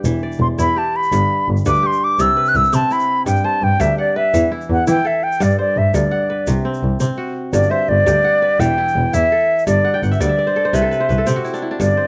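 A 12/8 pulse at 112 beats per minute, counted in dotted quarters with a straight feel, drives this hypnotic, joyful piece of West African string and xylophone music in G major, heard as a section cut from a longer piece. A fingerpicked kora spins out ringing, crisp arpeggios across its range, while a bowed double bass, sitting up front, supplies a smooth, even bass line with gentle vibrato. A grainy, bright tube shaker adds a soft percussive shimmer in a small-room setting. From 0.4 seconds the concert flute leads the melody, pure-toned and tongued, close-miked and up front with a touch of vibrato, over chords that move among Em, G and C before the music shifts into a new section at 3.3 seconds. At 9.8 seconds the kora steps forward with a fill, and light studio reverb lends the whole ensemble a gentle sense of space.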